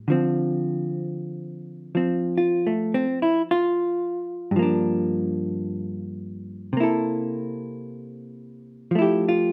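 A clean, dark-toned hollow-body electric jazz guitar plays alone from the start, fingered and compressed, sitting up front in a moderately reverberant large studio. This tender, romantic ballad fragment moves at a slow swing through Dm7, Gm7 and C6 before settling on Fmaj9 near 9.0 seconds.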